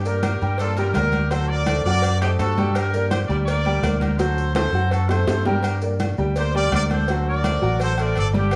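A roomy, slightly distant studio sound frames this passionate, danceable salsa excerpt in G minor at 166 BPM, where a brilliant, vibrato-laden horn section carries the melody up front with plate reverb over a dark, round, punchy fingered electric bass, a woody upright piano with short sustain, and background percussion of soft-handed congas, grainy maracas, ringing agogo bells and timbales, and tight high-tuned cowbell and bongos, with a drum fill from 4.6 to 5.6 seconds as the chords alternate between Gm and D7.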